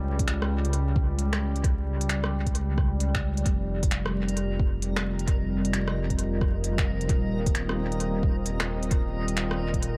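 A rumbling, detuned saw bass sits up front in this ghostly, melancholic future garage excerpt, its beating unison tone pumping with the sidechain from the first moment. Beneath and around it, a deep, moody ambient pad holds sustained chords with slow attack and long release, its wave-folded, ring-modulated sawtooth character softened by chorus and reverb into a mellow haze that also pumps with the sidechain. At 132 BPM in 4/4 with a 63% swing on the sixteenths, a soft, tape-warm electronic kick anchors the groove, while a small-room kit of finger snaps, crisp hats and rim clicks trails off into dub echo. The harmony opens unresolved, moving to F5 at 3.5 seconds and Eb at 7.1 seconds. From 4.2 seconds a bright, reversed granular texture swells dreamily in the background, and the whole sits in an echo-heavy digital ambience flecked with vinyl crackle.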